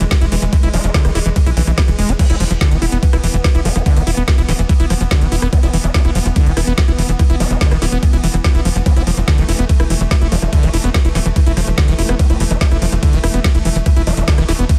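Driving and psychedelic, this trance excerpt is built on an up-front, knocking overdriven kick and a tight, dark sequencer bass, while a squelchy, gritty acid riff with dub echo churns overhead, an overdriven drum kit adds a woody snare and metallic hats, a nasal vowel-sweep wobble line enters at 0.7 seconds in the background, and a pulsing, detuned gated texture holds sustained chords in the background of a dense, heavily limited mix.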